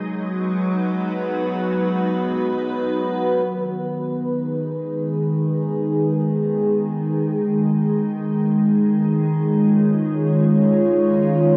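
A soft, dulled cassette sound with a wet studio reverb wraps this short ambient piece, cut from a longer work and set in G# dorian with free time. The mood is serene and melancholic, carried by an evolving wavetable pad that sits up front, its detuned unison voices blending triangle and sine tones that morph under chorus and their own reverb. The pad holds sustained chords from D#3 to C#5, opening on B5 before moving to G#m at 3.5 seconds and C#add9 at 8.2 seconds. Beneath it, a calm organ-like drone of detuned sine voices hums quietly between G#3 and D#4, thickened by ensemble chorus. From 3.5 seconds the drone fades in, slowly gathering beneath the pad's long attacks and releases until the close at 11.6 seconds.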